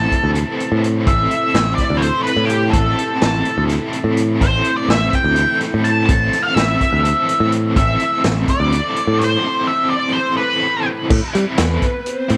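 Trippy and hypnotic, this psychedelic rock excerpt in 7/8 at 251 BPM (eighths) sits in A minor on an Amadd9 chord, with a dark, up-front octave-fuzz lead guitar carrying the melody through wah, distortion and tape echo until 10.9 seconds, a double-tracked overdriven electric guitar riff colored with tremolo, a direct, up-front picked electric bass, a punchy vintage drum kit with a rolled-off top entering at 0.1 seconds, and a warbling sawtooth string machine with cellos holding sustained chords in the background under ensemble chorus before taking a solo from 11.1 seconds, set in a small room ambience.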